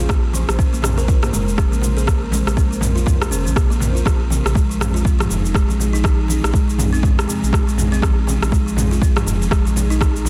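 A 121 BPM afro house groove swung at 58% on the 16ths drives this hypnotic Bb minor cut from a longer piece, with an up-front, overdriven deep kick entering at 0.1 s, an overdriven deep house kit of rim click, shaker and toms re-recorded in a large room, and very quiet, low-tuned congas, while a round sine sub bass and a buzzing, woody kalimba playing arpeggios through digital delay both pump to the sidechain, and an ethereal, chorused pad with built-in reverb holds Bbmadd9 chords in the background before shifting to Fm7 at 4.1 s, all in a dense, heavily limited modern master.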